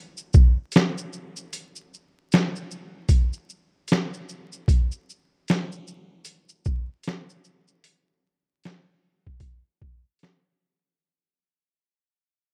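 Hip hop at 76 BPM in 4/4, with a 61% swing on the sixteenths and a nostalgic, melancholic mood. This short piece, cut from a longer work, features a single trip hop sampler-style drum kit playing from 0.2 to 10.4 seconds, built from finger snaps, hi-hat, kick drum, shaker and snare drum. The kit sits up front and sounds compressed, pitched down and gritty, with a thumpy kick, a medium-tuned snare and a tape-warm character. The mix is dry and rough, like a home demo, with vinyl crackle running underneath. The whole passage fades out across its full length, ending at 11.0 seconds.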